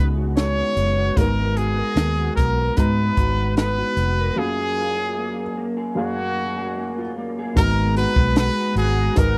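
A dry, close 1970s-style studio sound frames this hazy, lonely stretch of indie bedroom pop, moving at 75 BPM in a straight 4/4 and set in G# dorian. A brilliant trumpet carries the melody up front, its scooped notes and vibrato dressed in lush chorus and slapback echo. Beneath it, a dark, woody upright piano with audible action noise and a slightly detuned, worn character shares the accompaniment with a slightly broken-up, lo-fi electric guitar played through a small old amp and colored by ensemble chorus and a vibrato effect. A foam-muted, round vintage fingered bass sits up front, and a compact cocktail kit of hi-hat, punchy kick and high-tuned snare joins at 0.4 seconds. The harmony moves from C#7sus4 to G#m9 and F#maj9, with a break from 4.4 seconds, and at 7.6 seconds a thick, detuned sawtooth-and-square unison pad with a slow attack settles in the background as G#m9 returns.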